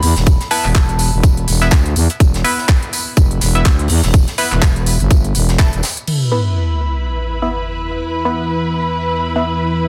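A growling, thick FM bass sits up front in this swaggering, bouncy bass house cut, pumping against a tight, tape-toned electronic kick at 124 BPM in 4/4 with a 16th-note swing. Two drum kits layer the groove: a garage kit brings crisp hats, handclaps and crash cymbal, while an airy, polished acoustic fusion kit adds hi-hat, a high-tuned snare and tambourine, its hats also pumping. A soft, pure synth bell opens with a brief mellow phrase through chorus, phaser and delay, and a nasal, band-passed sawtooth chord stab with ring modulation keeps stabbing brightly through phaser and delay. The bass drops away at 5.8 seconds, and at 6.1 seconds a sub drop impact arrives as a smooth, bowed chamber string section enters up front with vibrato. From 7.4 seconds a deep, moody ambient pad of detuned unison saws and a sub octave swells in with chorus and built-in reverb, all set in a small room ambience under a dense, heavily limited modern master.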